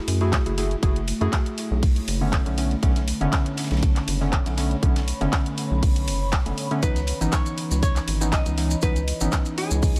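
Hypnotic and smooth, this deep house excerpt moves at 120 BPM in 4/4 with a light 16th-note swing, cut from a longer piece and built over F#m9, Bm9 and C#m9 chords. A punchy electronic kick sits up front alongside a rubbery, bouncy square-wave bass with a filter pluck and fast attack, its sidechain pumping giving the low end a breathing motion. Round, mellow analog keys play detuned stabs treated with chorus, dub echo and sidechain pumping, while a moody, detuned analog pad holds sustained chords in the background with chorus and pumping of its own. A house kit adds handclaps and bright hats, and a dark, big-room acoustic rock kit of hi-hat, ride and a medium-tuned snare sits far back under high-pass filtering. From 1.2 seconds a very quiet, deep ambient pad with built-in reverb adds a sub-octave haze. At 6.8 seconds, as the harmony moves to C#m9, a clean, picked hollow-body archtop guitar enters with a dark melody through dub echo, joined by grainy, saturated maracas.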